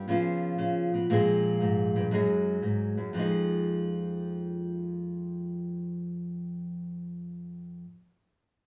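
Heard from further back in a small studio room with a wet, short reverb, this brief cut from a longer piece presents a single nylon-string guitar in a moody, swinging solo jazz setting in F minor at 118 BPM. The fingerpicked acoustic guitar sounds bright and up front, its fresh strings giving a small tone across a range from F2 to Ab4. It moves through Db7, Bbsus2 and Gbsus2 before settling on Fm7 at 3.1 seconds, where a new section begins, and the playing ends at 7.9 seconds.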